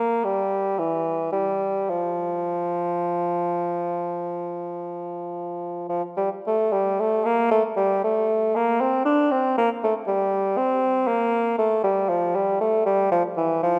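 A clear, up-front solo bassoon carries this classical, baroque-style fantasia alone, its line moving with a free rubato over a dance-like pulse in four. The mood is radiant, and the single voice stays in a compact middle-low range while shifting to a new section at 6.5 seconds. A wet concert hall reverb surrounds the playing in this short cut from a longer piece, which runs to 13.8 seconds.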